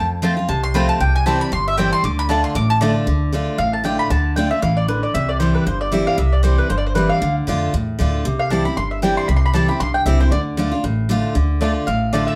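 Bluegrass in D dorian at a brisk 232 BPM with a swung feel, rustic and lonesome in mood, moving through F, C and Dm. A woody, up-front mandolin carries the melody at the start and returns at 11.9 seconds with a touch of plate reverb, while a second mandolin plays stabs throughout, over a bright, full-bodied picked steel-string guitar and a dark, thumpy pizzicato upright bass on gut strings. A nasal, metallic lap resonator guitar played with slide and fingerpicks adds a brief second line from 11.9 seconds, and the whole group sounds from further back in a moderately reverberant studio.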